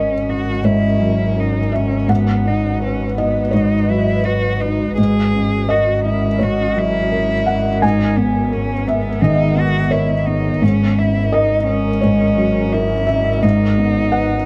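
Fragile and longing, this neoclassical piece for piano and strings moves at 85 BPM in 4/4 with a rubato feel, and it is cut from a longer work. A felt-muted upright piano sits up front as the accompaniment, soft, dark and intimate, its thick felt and audible action noise giving a close, natural presence across its range from G#2 to G#5. A single warm cello plays the second line with vibrato, soft attacks and expressive portamento. A clear, focused bowed double bass holds a low G#1 from a distance, adding its own vibrato. From 0.1 s an ethereal, airy pad of detuned, wave-folded sawtooth and triangle tones sustains full-bodied chords in the background, with slow attack, long release, ensemble chorus and built-in reverb. The harmony rests over a G# bass, moving between F#/G#, B/G# and G#madd9 in a moderate booth ambience that runs to 14.5 s.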